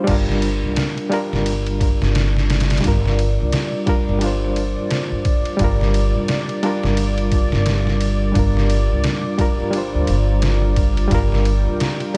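A barky, overdriven reed electric piano provides the accompaniment in this dark, melancholic trip hop excerpt from 0.0 seconds, its tone roughened by amp drive, tremolo, tape echo and the grit of an old 12-bit sampler. Up front, a woody pizzicato upright bass with steel strings holds the low end, while a sampler-style drum kit, compressed and pitched down, supplies a thumpy kick, a medium-tuned snare, ride and crash cymbals over a swung 4/4 groove. From 1.2 seconds a deep, moody pad fades in with slow-attack sustained chords, its detuned sawtooth and sine layers and sub octave thickened by chorus, built-in reverb and the same sampler grit. The whole passage rests on a single Gm7 chord, lending it a brooding, suspended feel. Light digital ambience frames the mix, placing the gritty keys and murky pad behind the forward rhythm section.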